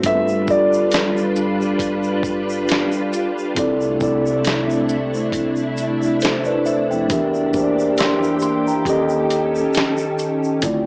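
A relaxed 68 BPM pulse in 4/4 with a gentle swing on the sixteenths sets a nostalgic, reflective lo-fi hip hop mood in this short cut from a longer piece. Up front, a gritty, compressed sampler-style drum kit delivers a thumpy kick, fat snare, hi-hat and shaker with tape grit, while a grainy, bright tube shaker sits faintly in the mix. A mellow tine electric piano carries the accompaniment through its built-in speakers alongside a silky, warbling string machine whose slow-attack chords are softened by ensemble chorus, a low-pass filter and cassette tape. Underneath, a woody, growly pizzicato upright bass stays in the background, and an intimate, slightly detuned upright piano with audible action noise offers a brief melody between 0.1 and 3.5 seconds. The harmony moves from G7 to C69, then Em7b5 and D#7#11, all wrapped in a small room and the muffled, small-speaker character of a home cassette recording.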